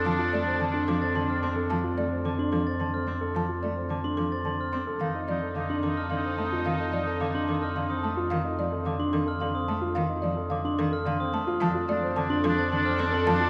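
A steady 3/4 pulse at 109 BPM with a straight feel drives this propulsive, hypnotic stretch of minimalist pattern music, cut from a longer classical piece in F mixolydian. A dark concert grand piano with long sustain runs arpeggios throughout, over a mellow, distant bass clarinet holding F2, while a bowed solo cello with vibrato fills in the accompaniment in its focused, rich middle register. On top, a folk marimba struck with medium mallets carries the woody, rustic melody, and a glockenspiel with soft plastic mallets adds airy, bell-like arpeggios from 0.7 seconds. A clear oboe and a smooth symphonic string section in the background appear together in short spans, at the start, from 5.0 to 8.1 seconds, and again from 11.6 seconds, the oboe tracing a second line against the strings' sustained chords. The harmony moves from Dm/F to F7 at 5.0 seconds and back to Dm/F, and the whole ensemble sits in a cathedral-like space with a long, wet reverb.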